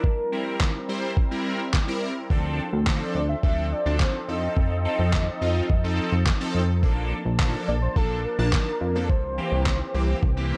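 A bittersweet yet confident dance-pop passage at 106 BPM in 4/4 opens with a velvety, detuned sawtooth synth lead carrying the melody with chorus, vibrato and digital delay. Alongside it sit a bold, bright polysynth treated with chorus and phaser, an evolving, warbling vintage pad set in the background, and a lo-fi sampler-style kit of thumpy kick, fat snare and handclaps, pitched down, muffled and overdriven, placed up front. At 2.3 seconds a glossy, retro pulse-wave synth bass with a filter sweep joins, and it pumps with the polysynth and pad over chords moving from C7 through Dm7, F7 and Bbmaj7 back to C7, all inside a digital ambience.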